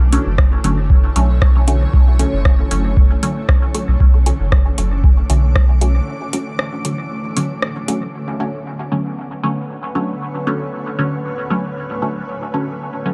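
Dub techno at 116 BPM in B minor, this hypnotic, meditative excerpt rests on a Bm9 chord, with a cloudy granular pad and a breathy, wind-like noise texture pumping under reverb, filtered chord stabs with phaser and dub echo under a filter sweep, a round sub bass and up-front deep kick that stop by 6.0 seconds for a break, and a booming drum machine with metallic hats and rim clicks echoing until 8.0 seconds, all in a dark digital ambience.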